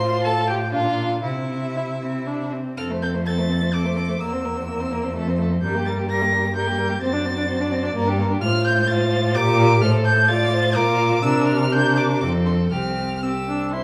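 A lively, spirited classical-period string quartet movement in F major opens at once with four single bowed players: a distant, focused first violin carrying the high melody, a smooth-topped second violin on a supporting line, and an even viola filling the accompaniment, each with vibrato. Beneath them an up-front, clear cello anchors the bass. At a quick 3/4 tempo of roughly 115-130 BPM with a rubato feel, the music moves through a short opening phrase before settling into a longer passage from 2.8 seconds, all bathed in a wet recital hall reverb.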